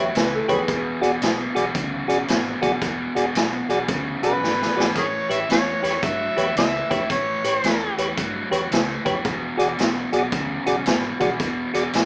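Swung 8ths at 112 BPM drive this soulful electric blues shuffle in E mixolydian, built on a punchy vintage drum kit with a fill from 4.4 to 5.0 seconds, a round, foam-muted bass in the background, an up-front overdriven guitar riff bathed in spring reverb and a mellow tonewheel organ with key click and slow rotary speaker, while a woody, slightly detuned upright piano adds a brief second line until 1.6 seconds and an amplified harmonica takes a gritty solo with tongue slaps and light vibrato from 4.2 to 8.0 seconds, the band heard playing live in one room through a small-speaker sound.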